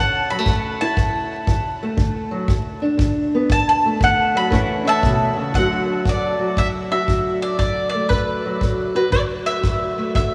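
Acoustic country blues with a soulful, laid-back feel, swinging at 118 BPM in D major, in a short fragment cut from a longer piece. A woody, double-strung mandolin carries the melody up front with a touch of tape echo, taking a solo over the opening 5.5 seconds, while a dark, boxy parlour guitar is fingerpicked underneath and a punchy kick played with brushes joins at 0.5 seconds. The whole mix is dreamy and soaked in a huge ambient reverb, with vinyl crackle and the feel of a small room around it.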